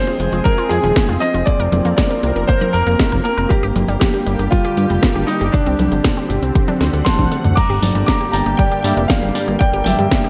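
A warm concert grand piano carries the melody in this nostalgic, danceable italo disco excerpt at 118 BPM in F dorian, its intimate tone touched by audible action noise and repeated through tape echo. Beneath it, a lush unison pad holds sustained, chorused chords with a slow attack, while a detuned sawtooth pluck spins arpeggios further back in the mix. A fat analog bass sits up front with tube saturation, paired with a punchy electronic kick and a house kit of cabasa, congas, hi-hat, toms, crash and a cracking snare. Both drum parts are tape-tinged and re-recorded in a large room, and the kit is bathed in gated reverb. The chords move from Fm through Bbsus2/F, Gm and Csus2 to a D7, where a very quiet electronic swell at 6.9 seconds and a drum fill at 7.1 seconds lead into a new section at 7.6 seconds. There a bright, barky electric piano, overdriven and gritty through a combo amp, adds stabs over the returning Gm.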